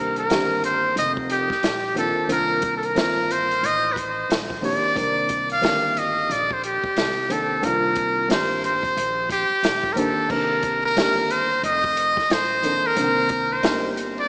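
Jazz-hop with a smoky, mellow swing, this short cut from a longer piece puts a buzzy, breathy muted trumpet up front with an analog delay, carrying the melody over a single Cm9 chord. Beneath it, a dark, slightly detuned upright piano with audible action noise shimmers through lush chorus, while a thumpy pizzicato upright bass sits in the background and an open jazz kit with dark cymbals and a boomy kick, roughened by vintage 12-bit sampler grit, plays from 0.2 to 14.2 seconds. The dreamy mix is soaked in a long hall reverb, with vinyl crackle and a small-speaker sound.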